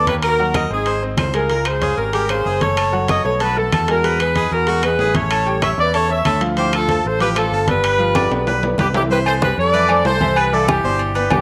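A tight, punchy horn section carries the melody up front from the first moment, joined by a warm harmonica with vibrato and scooped notes on a second line, a brilliant, slightly detuned upright piano with audible action noise in the background, and a round, dark fingered electric bass, while bright, low-tuned congas, ringing timbales and agogo bells, and woody claves drive this festive, sunny salsa fragment, cut from a longer piece, through a drum fill at 8.2 seconds into a new section at 9.1 seconds, the whole sound set in moderate spring reverb.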